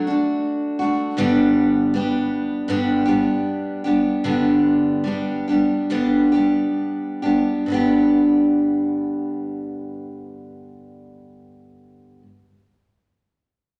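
A picked steel-string acoustic guitar, sitting up front with an auditorium tone, opens this brief, warm and pastoral folk fragment in G major on a D chord before moving to G at 1.2 s, easing its tempo within 64 to 81 BPM until a new section begins at 7.7 s, with the guitar set in a wet large studio reverb that rings for 1.4 seconds.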